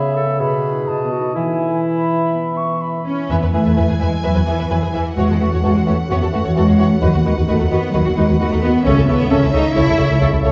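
The pulse in four is loose and uneven, pushed and pulled by rubato, giving this fast, dramatic romantic orchestral movement a stormy, restless drive. From the opening, a ringing, thumb-plucked concert harp spreads arpeggios alongside soft woodwind lines: an airy flute with a straight tone, a dark, distant cor anglais, a roomy clarinet and a bassoon with light vibrato in accompaniment, all set in the background. The cello section takes up the bass at 3.1 seconds, and at 3.3 seconds the rest of the strings arrive: violins carry a lush melody with portamento while a second violin line with a smooth top sits behind it, violas fill in with bowed accompaniment, and a dark double bass section anchors the low end up front. Once the strings are in, the harmony moves through subdominant and dominant colours with chords over a descending bass, keeping the momentum unsettled. A wet scoring-stage reverb and a mellow, dusky production wrap this short passage, cut from a longer piece, in a rich, enveloping glow.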